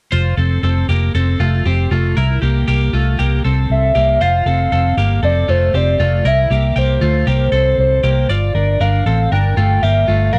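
A straight 4/4 pulse at 118 BPM drives this breezy, nostalgic indie pop excerpt in F major, where a bright, twangy twelve-string electric guitar with cassette-tape coloring spins arpeggios over a dark, punchy, foam-muted vintage bass sitting up front, and a hollow, woody clarinet-like synth lead, shimmering with chorus, phaser and vibrato, joins them at 3.7 seconds to carry the melody over chords moving from F and C7 to Gm7, captured as a home cassette recording with light reverb.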